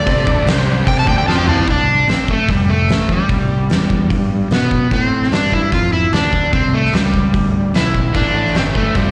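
A dark, up-front overdriven slide guitar carries the melody with slapback echo through this gritty, brooding blues rock and southern rock power-trio excerpt at 148 BPM in A minor, opening as a slide solo over thick background chords from an overdriven tonewheel organ on a slow rotary speaker and a biting, double-tracked guitar riff, both of which stop at 1.7 seconds after a drum fill, with the riff returning at 8.1 seconds, while a growling overdriven fingered bass and an oversized low-tuned drum kit with a fat snare and punchy kick drive an Am–F–C–G progression, captured live through the venue's PA.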